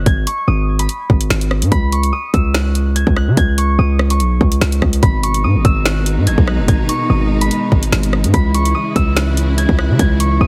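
A half-time drill beat at 145 BPM in G# minor drives this tense, dark hip hop clip, with an up-front electronic kit of hard-clipped kick, woody snare, rim clicks, finger snaps and hi-hats, and a punchy, heavy 808-style bass with a fast attack and a noise layer beneath it. A mellow, fingerpicked Celtic harp rings out the high melody through a delay, moving from G#m to B69, and at 5.0 s a clear, biting symphonic string section adds close, lush bowed chords with vibrato as the harmony returns to G#m before shifting to C#m. The mix is dry and heavily compressed, giving it a dense, radio-ready punch.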